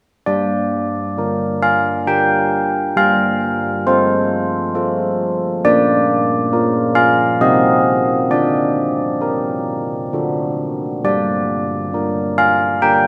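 In a straight, unhurried three-four, this short classical passage for church bells sounds wintry and solemn. A solo carillon plays from 0.3 to 13.1 seconds, its bronze tone mellow and soft with a padded clapper and a ringing minor-third overtone, sitting up front before a wet church reverb that lingers for about 3.3 seconds. The chords move from G minor through Bb, C minor and D before settling back on G minor, as the fragment breaks off from a longer piece.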